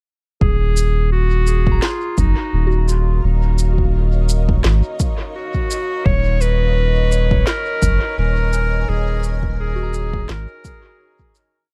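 A bright, classically styled clarinet carries the melody from 0.4 seconds, playing short motif-based call phrases trailed by analog delay in this meditative, hazy ambient dub piece in Eb minor at 85 BPM. Beneath it, a round, up-front sub bass with tube saturation holds down a dub-style line, joined by a deep, tape-toned electronic kick that sits soft and slow in the groove. A woody electronic snare and shaker tap out a sparse beat drenched in dub echo, with a gentle 16th-note swing. From 2.3 seconds a cloudy, blurred granular pad fades in with slowly shifting chords moving from Ebm7 to Gbadd9/Eb, while a pure, mellow FM bell in the background traces two slow arpeggio loops of unequal length that drift against each other through chorus and delay. The mix is dry of room reverb but heavy with echo, and the whole piece fades out from 7.9 seconds.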